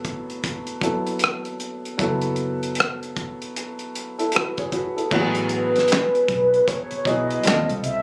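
A relaxed 4/4 groove at 77 BPM with swung sixteenths carries this smooth R&B and neo-soul excerpt, driven by a cloth-damped, thuddy drum kit with a fat snare, tight kick, rim clicks, handclaps, hi-hat, dark crash and a rolled-off top. A woody upright piano with long sustain lays down chords moving from Gmaj9 to F#m7, then Asus2 and D#add9, over a round, foam-muted vintage electric bass. At 5.5 seconds a mellow, horn-like synth lead enters up front with a soft attack, vibrato, a filter sweep, chorus and slapback echo, and the whole take has the compressed, close feel of a phone recording in a club-like room.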